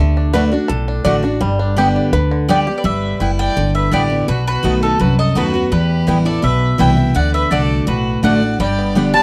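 A twangy five-string banjo opens this driving, rustic bluegrass excerpt with a solo lead from 0.0 to 2.8 seconds, over an up-front, full-bodied picked acoustic guitar, a thumpy, gut-strung upright bass and a picked mandolin adding stabs, all moving at 167 BPM in G major. At 2.5 seconds a second, mellow mandolin takes the melody while a distant, biting fiddle with light vibrato adds a second line, and the banjo returns briefly at 8.6 seconds. The chords move from D through G6, B7 and Em back to G, captured in a dry, close 1970s-style studio sound with small room ambience.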